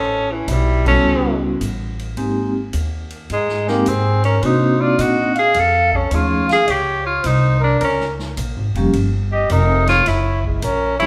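Captured with the band playing live in one room, this excerpt from a longer piece sits in a moderate large studio reverb that lends the ensemble a natural sense of space. It is cool, moody small-group swing and bop at 106 BPM in 4/4, with swung eighths. An up-front tenor saxophone carries the melody in a clear, vintage tone, shaded with vibrato and scooped notes, while a trumpet adds a breathy, whispered second line with a soft attack and an intimate feel. A woody pizzicato upright bass sits forward in the mix, the drum kit enters at 0.5 s sounding distant with a boomy kick, medium-tuned snare, ride, hi-hat and crash, and the band hits an accent at 0.8 s. A close-miked vibraphone joins at 0.9 s with metallic, ringing, dry accompaniment and fast motor vibrato, as the harmony moves from A13 through Abmaj7, Cm7b5 and F7alt toward Ebadd9 and Gb.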